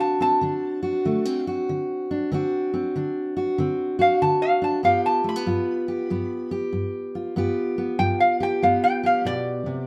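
Acoustic country blues with a soulful, swaggering mood at 95 BPM in a swung 4/4, where a metallic, nasal resonator guitar played with a steel bar carries the melody up front across the whole 9.9 seconds, over a dark, woody fingerpicked steel-string acoustic guitar with old strings moving from D7 to G7, both captured live in one room with moderate studio reverb.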